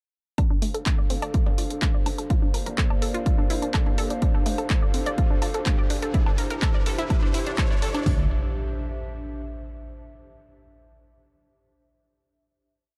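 Dark and hypnotic, this short melodic techno piece is one long build, driven by an up-front four-on-the-floor kick with open hats and floor toms, while a second, high-pass-filtered kit adds closed hats, claps, woodblock and mid toms. A bright, detuned unison pluck runs a 32-step arpeggio through delay and a filter sweep over a moody analog pad with a moving notch, and a very quiet, saturated sixteenth-note bass sits beneath; both the pad and the pluck pump with sidechain. From 2.2 s a background riser and impact arrive alongside a mellow, lo-fi tape-like pad with built-in reverb, and at 8.1 s the build resolves to a final chord in a dry, warm mix.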